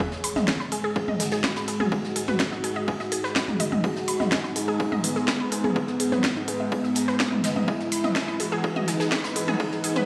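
A thick, detuned unison lead and a bright, round analog pluck open this hypnotic, cinematic melodic techno build-up at 125 BPM in G# minor, both pumping rhythmically and trailed by delay while filter sweeps run across them. Beneath them a deep, moody pad holds sustained chords with a slow attack and chorus, shifting from G# minor to E at 7.7 seconds. From 0.3 seconds a resonant drone on G# sits in the background, its overtones moving under built-in reverb. The techno kit enters at 0.2 seconds and sits up front with a cracking snare, smooth hats and toms. A punchy, tape-tinged electronic kick stays further back, beside an airy, polished brush kit whose dark ride cymbal pumps alongside the synths. The whole mix plays through a big system in a bare room, with a wet, large studio reverb on top.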